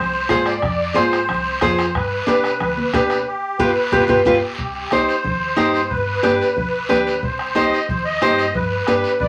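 Fiery and danceable, this short cumbia excerpt moves at a straight 182 BPM in C harmonic minor, with a fingerpicked nylon-string guitar carrying the accompaniment up front beside a reedy, shimmering musette accordion on the second line, while a woody pizzicato upright bass sits low beneath them. Bombo, high-tuned congas played with soft hands, and a raspy, vintage guiro drive the groove, and a band accent from 3.3 s with a drum fill leads into the second section at 4.6 s. The sound carries a wet studio ambience and a layer of vinyl crackle.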